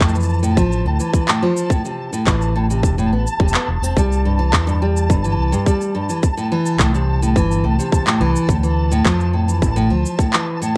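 Autumnal and delicate, this folktronica excerpt at 106 BPM sets a bright, fingerpicked nylon-string guitar playing arpeggios with tape echo and audible finger squeak over an overdriven, punchy fingered electric bass, a tight electronic kick drum up front, electronic handclaps and shaker with large-room character, and a faint flickering, grainy granular texture held high on A5 in its own reverb, as the chords move from a rootless Dmadd9 through Am and C before returning to Dmadd9 at 8.5 seconds.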